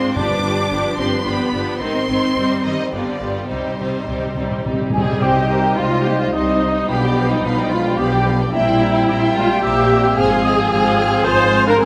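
Set in a straight three-beat metre, this quick, urgent classical-period passage for symphony orchestra, cut from a longer movement, carries a restless drive. The violins sing the melody with a focused, lush vibrato, while a second, more distant violin line and the up-front violas fill out the harmony, and the expressive, portamento-touched cellos carry the bass. Bowed double basses join them at the bottom from 0.2 seconds. Timpani struck with hard mallets on calf heads sound close and dry, returning for a fill from 3.5 seconds that leads into a restatement of the opening material. Around 4.9 seconds the winds join, with a clear, soft-attacked clarinet and an airy, hollow flute ensemble adding second lines, soon followed by a dark, vintage-toned cor anglais and mellow French horns holding sustained chords. The orchestra sits in a wet scoring-stage reverb that lends it a spacious sheen.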